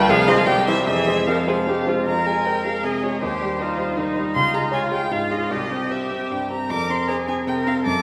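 Heard in the wet reverb of a church or concert hall, this dramatic, urgent excerpt from a quick classical-period piano quartet movement in F minor runs at 156 BPM in 3/4. A rich, expressive violin with vibrato and portamento carries the melody up front, while a smooth, even, close-sounding cello sings a second line. A focused viola accompanies until 7.8 seconds, and a clear, present grand piano accompanies over harmonies that pass from Fm/C through Cm/Eb, Db and C back to Fm.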